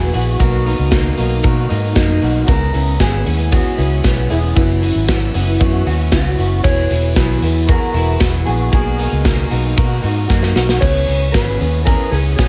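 Nostalgic and bright, this jangly indie pop excerpt sets a clean, fingered electric guitar melody over slightly broken-up, twangy arpeggios from a small old amp, picked steel-string acoustic guitar and a woody upright piano with audible action noise in the background, all bathed in plate reverb, while a round, foam-muted fingered bass and a modern studio kit with a punchy kick and gated reverb sit up front and the drums mark a fill at 10.3 seconds.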